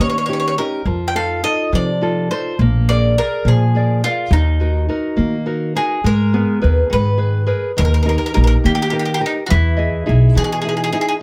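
This Italian folk serenade in a lilting 6/8 has a romantic, wistful mood and is cut from a longer piece. A bowl-back mandolin carries the melody up front, its picked double strings giving the tune a warm voice. Beside it, a nylon-string guitar fingerpicks the accompaniment with a dark, small tone, while a pizzicato upright bass on steel strings sits a little louder in the mix with a woody, growly bottom end. The harmony moves through dominant-seventh colour before settling into a minor chord, then turns to a new tonal centre at 6.1 s, where the second section opens on a lush added-ninth chord and later rests on a major-seventh sonority. All three instruments play together throughout under a light reverb that keeps the intimate, close-up sound of a small ensemble.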